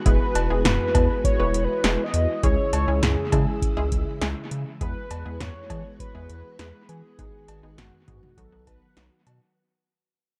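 A vintage, warbling organ-string pad opens this nostalgic, wistful synth-pop fragment in E major at 101 BPM, its sustained chords thickened by ensemble chorus. Almost at once a punchy electronic drum machine arrives up front, with a deep kick, snappy snare, metallic hats, cowbell and toms, touched by analog delay. A round, dark analog bass holds down the low end, while a lush, detuned unison pluck with a wave-folded edge fills in the accompaniment. Above them a velvety, full-bodied synth lead carries the melody with chorus, vibrato and analog delay. The chords move from Eadd9 to C#m, back to Eadd9, then G#m7 and B, and the dry, echo-heavy mix fades out across the whole 9.6 seconds.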